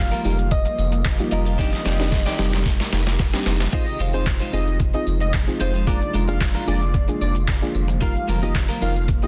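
Driving and energetic, this dance-pop excerpt moves at 112 BPM in F dorian, with a knocking electronic R&B kit, handclaps and shaker up front beside a deep, round sine sub bass. A soft, dark pluck and a shimmering, ethereal granular pad carry the harmony under sidechain pumping, while a clean picked electric guitar drenched in lush chorus plays a riff. A gentle, keys-like FM lead with tape echo opens the melody until 3.2 s, and after a drum fill a thick, bold detuned unison lead with vibrato takes over at 3.7 s as the chords move from Fm7 to Bb7/F and back to Ebadd9/F, with a grainy tube shaker tucked very quietly beneath. The digital ambience and dense, heavily limited modern master keep the sound tight and loud.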